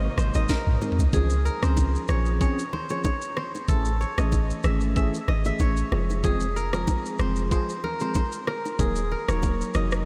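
A dreamy, reverb-soaked afrobeats excerpt at 94 BPM in Db major, romantic and breezy, where a deep, boomy clean 808-style bass sits up front under a barky, worn, slightly out-of-tune tine electric piano with overdrive and chorus, a bright ringing kora riff with delay, a knocking electronic afro-pop kit with a sharp snare and 12-bit sampler grit that enters at 0.2 s during a brief opening of a very quiet round pluck and a hollow, flute-like pad that both drop out by 1.1 s, and very quiet, close, dry congas and bongos, all moving through Dbmaj7, Amaj7, Fm and Ebm chords.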